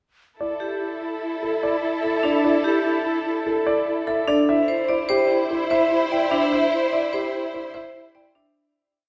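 A straight, propulsive pulse in 5/4 at 147 BPM drives this short, hypnotic piece of minimalist classical pattern music, tuned slightly high to A4 = 441 Hz. From 0.4 seconds the dark concert grand piano carries the melody as a repeated short cell between G4 and G5, its mellow tone backed by deep bass and short sustain. The vibraphone, struck with hard mallets, adds bright, metallic arpeggios to the texture in its own repeated cell, ringing under a medium motor vibrato. An airy alto flute holds a second line on E4 in pulsing notes that swell and fade with a crisp attack, while a focused studio string section sits up front with bowed, swelling held chords. The harmony moves from Dsus24 to C at 4.5 seconds, all bathed in a long, wet church reverb, before the piece fades out from 6.5 seconds.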